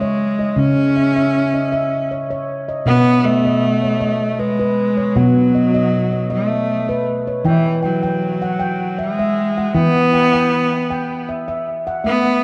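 In an unhurried, straight three-beat lilt, this gentle, meditative world piece pairs a ringing stainless-steel handpan, struck with the fingertips and playing arpeggios, with a single bowed cello carrying the melody in a bright, biting tone with light vibrato. Both sit up front and are heard together throughout the 12.4-second excerpt, each touched by a diffuse ambient delay. The production is dark and warm, with a wet, spacious reverb around the parts.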